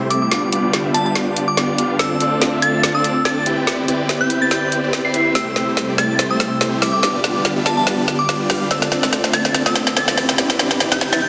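Future bass in a half-time, swung feel, this emotional and dreamy build-up is cut from a longer piece and rides a cycling progression of G7, Dm7, Cmaj9 and Am7. Huge, detuned supersaw chords sit up front with a bright, full-bodied riff, passed through a low-pass filter and a filter sweep. Beneath them an airy, breathy pad holds sustained chords with a slow attack, mellow chorus and its own filter sweep, while a saturated sub bass is barely audible at the very bottom. A glassy, crystalline FM bell carries the melody high above, its decaying notes trailed by chorus and digital delay. A tape-warm trap kit of woody snare and metallic hats plays a drum fill throughout, and an electronic riser enters in the background at 8.0 seconds, all bathed in a lush hall reverb and a dense, heavily limited modern master.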